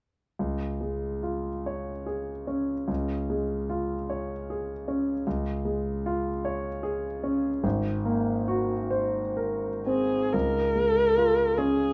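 A light reverb surrounds both instruments, which sit up front, with the viola close in the sound. This is a serene romantic classical duo in Db major, moving in a slow, rubato 6/8 at 40 to 52 dotted-quarter beats per minute. The clear concert grand piano carries the accompaniment from the opening, its deep bass and smooth, vintage tone spreading from low to middle register over a Db chord that moves to Ab9 at 7.6 seconds and settles back on Db. At 9.9 seconds a single dark viola takes up the melody, bowed with a soft attack, expressive vibrato and portamento in a narrow range, slightly louder than the piano. Shortly after its entrance a new section begins at 10.3 seconds, just before this short passage, taken from a longer piece, comes to an end at 11.9 seconds, leaving a warm, calm impression.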